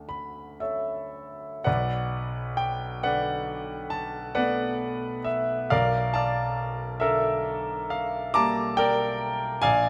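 Hazy and serene, this brief fragment of impressionist classical writing for solo piano drifts in a lilting 9/8 metre, its pulse stretched and relaxed by rubato. A bright concert grand carries everything alone, reaching from a deep bass low in its range up to glistening upper notes. The instrument sits up front and sounds intimate, with audible action noise and a long, polished sustain that lets each chord bloom. The harmony opens on Dmaj7, moves to Bm7 at 1.7 seconds, then shifts to a dusky Gm9/B at 5.7 seconds, lending the passage a gently shifting colour. A moderate concert hall reverb surrounds the piano, giving the notes a soft, airy halo as they fade.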